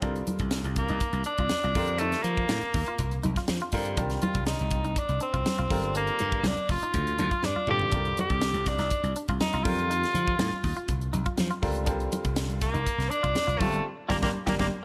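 A forceful, vintage-toned tenor saxophone carries the melody up front from 0.8 seconds with vibrato and a slapback echo, riding an intense, funky electric jazz fusion groove in C dorian at 122 BPM in a straight 4/4. Beneath it, a growly slap bass and a crisp, polished drum kit with a punchy kick and high-tuned snare drive the band, joined by close, dry congas in the background, a brilliant concert grand piano with deep bass comping through chords like C9sus4, F9sus4, Cm11 and Gm11, and twangy, compressed clean electric guitar stabs with subtle chorus and slapback echo. A drum fill lands at 7.4 seconds and a band accent closes this cut from a longer piece at 13.9 seconds, all in light reverb with some lossy compression artefacts.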